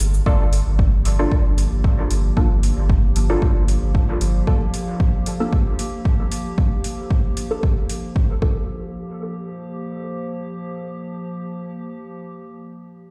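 A lightly swung 4/4 pulse drives this meditative, nocturnal dub techno excerpt, built on an overdriven, up-front electronic kick and metallic, overdriven electronic hi-hat and cabasa, while a round sine sub bass pumps beneath them until 4.4 seconds. Muted, detuned sawtooth chord stabs on a Gm7 pass through phaser and dub echo under a filter sweep, and a warbling, lo-fi tape-like pad with chorus and slow attack drifts in from 0.6 seconds, both ducking to the sidechain. The drums fall away by 8.5 seconds, leaving pad and stabs to hang in a big, bare-room studio reverb.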